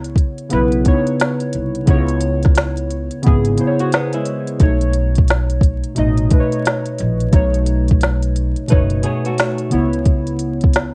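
An up-front organic electronic drum kit with a soft kick, woody snare, crisp hats and vintage 12-bit sampler grit anchors this reflective, melancholic lo-fi hip hop excerpt at 88 BPM in C# minor, under warbling, nostalgic synth keys with chorus and a low-pass filter, a pizzicato upright bass on C#m7 and B9, and a dark, fingerpicked flamenco guitar that drifts through analog delay at 3.8 s and 8.7 s, all set in light reverb and vinyl crackle.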